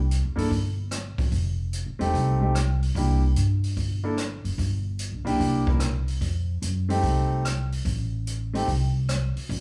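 A live, one-room band sound with small room ambience and a wet, large studio reverb frames this short slice of small-group swing and bop, playful and sophisticated, swinging in 4/4 at 147 BPM in C mixolydian. A woody, thumpy pizzicato upright bass sits up front from the start, and an acoustic drum kit with a boomy kick, hi-hat and rim click enters at 0.1 seconds. An intimate grand piano with audible action noise joins at 0.4 seconds, accompanying through C, F7, C7, Gm and a rootless F7 until 8.7 seconds.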